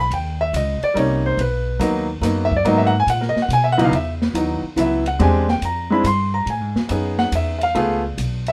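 A swung jazz waltz at 141 BPM in 3/4, this smoky, cool piano trio excerpt opens in G# minor and moves to C# minor at 3.9 s, with an up-front baby grand carrying the melody as a solo across chords like G#m9, C#m11 and a rootless Amaj9#11, a woody, thumpy pizzicato upright bass on gut strings underneath, and a dark, smooth, small-room acoustic drum kit with dark cymbals, punchy kick, snare and hi-hat entering at 0.1 s, all set in light reverb.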